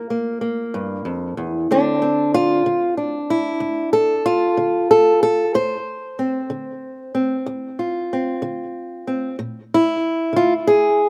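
A lone fingerpicked acoustic guitar opens this smoky, mournful slice of country blues, its old ladder-braced body giving a boxy, warm tone that sits up front with a touch of slapback echo. Moving in a slow, straight 12/8 pulse, it shifts from Gm7 to Dm7 at 1.7 seconds and reaches Bb7 at 9.4 seconds, spanning from low bass notes up into its middle register. The outdoor recording has little reverb and a close, dry intimacy, and the piece is cut from a longer performance.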